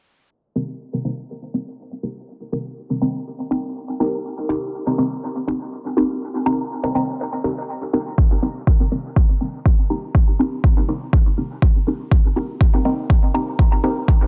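Through a dense, heavily limited, low-passed master with light reverb, this hazy, deep dub techno piece in C minor at 122 BPM sets muted, detuned chord stabs on Cm7, phased, pumping and trailed by dub echo under a filter sweep, before an overdriven, layered electronic kick enters up front at 8.2 s.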